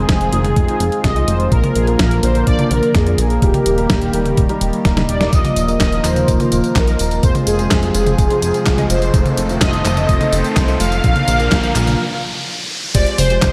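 A dreamy mix soaked in lush hall reverb carries this nostalgic, bittersweet italo disco excerpt at 126 BPM in F dorian, where a brassy, round synth brass melody with chorus, phaser, delay and vibrato floats over a smooth sawtooth pad, a glossy, nasal synth bass and background piano stabs treated with analog chorus, tape echo and a low-pass filter. A thumpy electronic kick and a tape-warm, detuned 8-bit drum machine with snare, handclaps, hi-hat, tambourine, toms and crash drive the groove, and a drum fill with a band accent leads at 5.3 seconds into a section where the piano gets a filter sweep. A faint riser climbs from 7.7 seconds into a break that ends at 12.9 seconds on an Fmadd9 chord.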